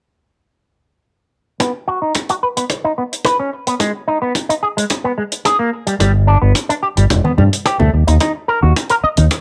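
An up-front fingered electric bass with an envelope filter, bright and tube-saturated with a sidechain pump, arrives at 6.0 seconds and becomes the loudest voice in this feel-good, groovy nu-disco excerpt. Before it, from 1.6 seconds, a dark, clean, compressed electric guitar with its own envelope filter plays the riff, coated in lush chorus, a low-pass filter and cassette tape colour, with a filter sweep running across it. Beneath the guitar, a tight, natural acoustic kick drum sits up front alongside a dry hi-hat, both carrying small room ambience and a tape tint in a straight 4/4 groove. Ringing, hard-handed congas slip into the background at 7.1 seconds. The harmony moves from B to G#m before the chords fall away, and the whole passage has the light reverb and homespun feel of a home recording on cassette.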